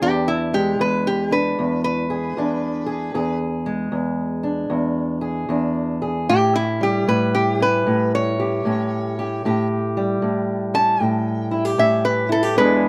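A metallic, nasal lap resonator guitar played with a steel bar and fingerpicks carries a soulful slide melody up front in this laid-back acoustic country blues at 76 BPM with a swung 4/4 feel, over a dark, boxy fingerpicked parlour steel-string guitar with slapback echo moving from E7 to A7 at 6.3 seconds, all dry and recorded outdoors in a short cut from a longer piece.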